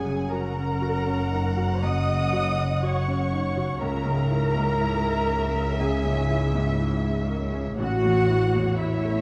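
Uplifting and moving, this rubato cinematic film-score excerpt for orchestra sets veiled, con sordino violin sections carrying a melody and a second line alongside muted violas, ringing harp arpeggios, a felt-muted upright piano with a mellow, intimate touch, and a bass of muted cellos sitting in the background with double basses, all in a dark production with moderate scoring-stage reverb as the chords move from F# to C#m to Aadd9.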